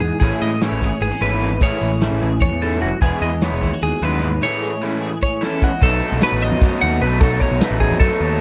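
A dry, close 1970s-style studio sound frames this bright, playful math rock and midwest emo passage at 301 BPM in 7/8 and A lydian, where a chorused, twangy twelve-string electric guitar plays accompaniment until 5.8 seconds, a warm, clean twelve-string traces arpeggios, a growly fuzz bass with overdrive sits up front, a double-tracked overdriven garage guitar carries the riff, and a loose indie drum kit with dark cymbals and a tight kick plays a fill at 5.2 seconds as the harmony moves from Amaj7 and Emaj7 to B7.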